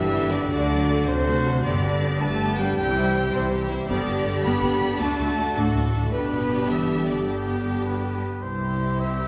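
A rich, lush violin section carries a soaring melody over a clear second violin line, both with vibrato, in this adventurous cinematic passage in 6/8. Beneath them, the violas add expressive portamento in the background, an intense cello section and a bowed double bass section hold down the bass, and a distant solo trumpet punctuates with stabs. Mellow French horns and a very quiet, vintage-toned trombone section sustain chords until 8.2 seconds, with the orchestra heard from further back in a wet scoring-stage reverb.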